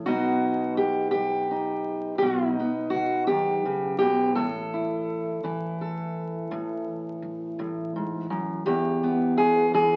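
A fingerpicked steel-string acoustic guitar sits up front and carries the melody in this short cut from a longer acoustic country blues piece, its dark concert tone spanning from the low strings up into the middle register. The mood is laid-back yet rollicking, rolling along in a straight 12/8 feel. An upright bass plays pizzicato in the background throughout, giving a woody, growly bottom end beneath the guitar. The harmony moves from B to A5 at 4.4 seconds and settles on E at 8.7 seconds, with the instruments tuned slightly sharp of standard pitch. A wet studio reverb surrounds the pair, and the sound carries the crackle of a very old 78 rpm record.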